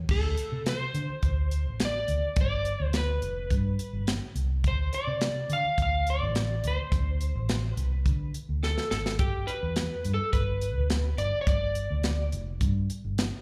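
A straight-eighth soul blues groove at 105 BPM in 4/4 opens this laid-back, soulful excerpt, carried by a tight funk drum kit with a dry, airy snare, tight kick, hi-hat and crash cymbal, all sitting up front. A vintage muted fingered electric bass holds down the low end from F1 to D3, its foam-muted tone dark, round and punchy. Over them, an electric slide guitar played with fingerpicks sings between G4 and F5, its slightly broken-up voice carrying a slapback echo. The chords move from D5 to G and back, with a drum fill at 8.6 seconds leading into the return to G at 9.2 seconds. The whole thing sounds like a live gig heard through the venue's PA, wrapped in club reverb, and it is cut from a longer piece, with the guitar stopping at 12.3 seconds while bass and drums carry on to the end.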